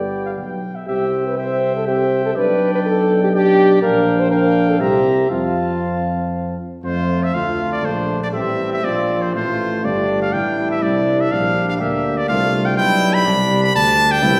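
Classical brass quintet music in a triumphant, noble mood, moving in a three-beat metre, with a bright, close-miked trumpet carrying the melody up front while a flugelhorn weaves a second line beneath it. A clear French horn with light vibrato and soft attacks and a warm, distant trombone fill in the accompaniment, and a mellow tuba anchors the bass. The quintet sounds from further back in a reverberant recital hall, and this excerpt, cut from a longer piece, shifts into a new section at 6.8 seconds.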